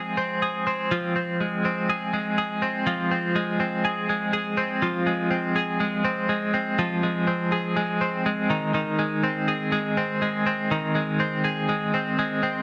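A lone twelve-string electric guitar opens this indie pop fragment, its clean, picked chime sitting up front with a bright, twangy edge and a tremolo effect. The mood is wistful and bittersweet, in a straight, steady 4/4 feel, with the guitar ranging across its middle register from Eb3 up to Ab4. A first phrase gives way to a second passage at 4.8 seconds, and at 8.5 seconds the harmony moves from the opening minor chord to Ab. The compressed guitar tone is bathed in a moderate echo-chamber reverb with a long, roomy tail. Over the whole recording lies the character of worn old cassette tape, its warbling pitch drift lending the brief 12.6-second cut a faded, nostalgic cast.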